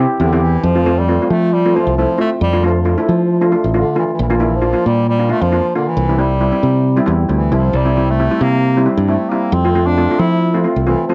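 Steel pan and electric bass open this carefree, sunny calypso together, a short cut from a longer piece in F major at 135 BPM with a light sixteenth-note swing. The double seconds pan, struck with hard rubber sticks, plays a metallic, shimmering accompaniment with a boxy small-room character and a cassette-tape coloring, while the fingered bass sits up front with a bright, direct electric tone. At 0.2 seconds a bass clarinet enters as the solo melody voice, clear with a soft attack and played in a classical style, its sound also carrying a cassette-tape grain. The harmony moves from C to F, then through Dm/F, Bb and C before settling back on F at 9.5 seconds. A light reverb and the intimate feel of a home cassette recording give the whole short passage a relaxed, sunlit charm.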